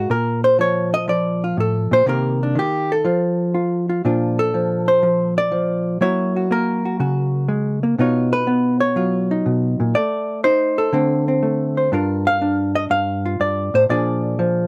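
A clean, dark hollow-body electric guitar opens this short solo jazz excerpt on its own, playing fingered and up front in a moderate booth ambience. The mood is sophisticated and swinging, moving at 122 BPM in 4/4 with a firm swing on the eighth notes, in Bb major. Its compressed tone spans from G2 up to F5 across the full 14.7 seconds, carrying a clearly soloistic passage through the opening 4.0 seconds, with the harmony suspended from 3.0 seconds. From 4.0 seconds a new passage begins on Bbmaj7, and the harmony takes colourful turns through Gb7, Badd9(#11) and Adim before settling onto Gm7 and a closing Bb7. Cut from a longer piece, it ends with the guitar on that final dominant chord.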